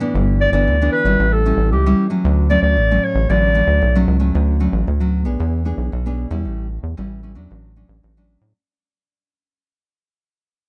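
Samba at 114 BPM in D major, joyful and sunny, with a full-bodied, fingerpicked nylon-string guitar carrying the accompaniment and a rubbery, bouncy square bass with a resonant filter pluck sitting up front beneath it. A warm, roomy clarinet plays the melody in a classical style from 0.4 to 4.0 seconds, after which the guitar and bass continue as the fade-out begins at 4.3 seconds. The dry, close recording has a 1970s studio feel with small room ambience, and this excerpt is cut from a longer piece.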